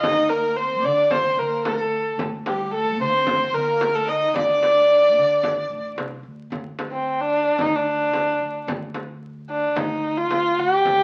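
Turkish makam ensemble music at 111 BPM in 4/4, hypnotic and soulful, cut from a longer piece and heard through the crackle of a very old 78 rpm record with a wet studio reverb. An intimate, bowed kamancheh carries the melody up front with light vibrato and portamento, while for the first 6.0 seconds a rich symphonic cello section in the background and a distant, roomy jazz-style harmonica with tongue slaps add second lines. A woody pizzicato upright bass on steel strings and a compressed, saturated frame drum played with hard hands run throughout the full 11.0 seconds.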